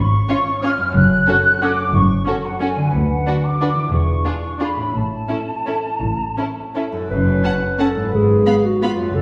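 Heard from further back in a recital hall with a generous, wet reverb, this elegant and festive orchestral ballroom waltz in A major moves in a rubato 3/4 at roughly 158-198 BPM, cut from a longer piece. A large, airy flute ensemble sits up front with a soft-attack second line high in its range, while a bright, ringing concert harp spreads fingerpicked arpeggios beneath it. The low end comes from a clear, focused cello section set in the background and a woody double bass section, both bowed with vibrato. From 0.3 s a lush violin section carries the expressive melody, joined by a second violin section playing a smooth, even counterline and a bright viola section holding a narrow accompaniment. At 6.9 s the flutes stop and a warm solo clarinet steps forward in classical style with its own second line, as the harmony turns through F#m toward a diminished chord.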